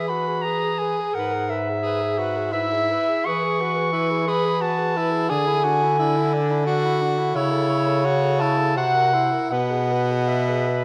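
Set in a flexible, rubato 3/4 at 86 BPM, this tender, lyrical classical excerpt for single-reed quartet places a warm clarinet melody up front over a tenor saxophone accompaniment, with an alto saxophone second line in the background and a clear, present bass clarinet bass, all four sounding throughout as the harmony settles into E major at 3.3 seconds, framed by a dark production and a moderate scoring-stage reverb.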